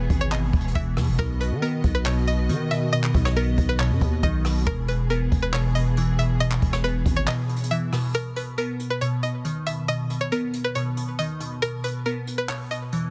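The sound is dense and heavily limited, set in a small room ambience, in this dreamy, wistful trap excerpt cut from a longer piece with a half-time hip hop feel. A twangy, string-like resonator pluck carries the melody in a bright, full-bodied voice, shaped by chorus, a low-pass filter and delay. Glassy digital keys sit up front beneath it with a sub-octave weight, while a dark, woody string section bowed sul tasto adds lush, vibrato-tinged sustained chords. A growling, buzzy 808-style bass drives the low end until 7.3 seconds, and the strings drop away at 8.1 seconds as the harmony moves between E and B. Throughout, an acoustic jazz brush kit with a boomy kick, hi-hat, rim click and handclaps is roughened by vintage 12-bit sampler grit.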